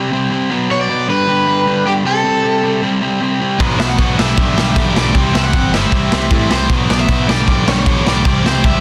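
Dense, heavily limited and lightly reverberant, this energetic, upbeat punk rock excerpt at 155 BPM opens with a bright, up-front distorted guitar riff, joined at 0.7 seconds by a picked, overdriven lead guitar melody carrying delay over chords moving through C5, Bm and G. At 3.6 seconds the band crashes in: a tight distorted rhythm guitar sits in the background, a very quiet high-gain guitar is double-tracked, and a growling picked bass, direct and amped with overdrive, digs into the low end. Driving it all is a raw garage drum kit, up front, saturated and gritty, with a punchy kick, medium-tuned snare, dark cymbals and a pumping small-room sound.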